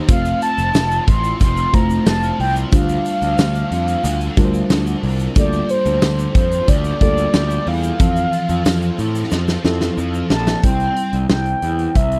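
A dry, close-miked small-room sound frames this glossy, uplifting 1980s-style pop excerpt in F major at 91 BPM, where a horn-like, warbling synth lead with chorus, vibrato and slapback echo carries the melody up front over a round, fuzz-overdriven picked bass and a huge arena drum kit with punchy kick, medium-tuned snare, hi-hat and tambourine. A mellow FM electric piano with chorus and phaser and a bright, double-tracked high-gain guitar with distortion and ensemble chorus fill out the accompaniment, while a grainy tube shaker sits in the background until 10.6 seconds. The chords move through Fmaj7, Dm7 and Gm9/D back to Fmaj7, a drum fill at 9.3 seconds leads into a new section on C at 10.6 seconds, and the guitar drops out at 11.1 seconds.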